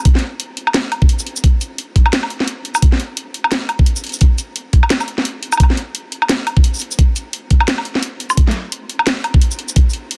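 A knocking, layered electronic kick sits up front beside a drum and bass kit of cracking snare, bright hi-hats, shaker and woodblock, both re-recorded in a small room, driving a tense, cinematic half-time groove with a swung sixteenth feel in this dry, dense and heavily limited drum and bass excerpt.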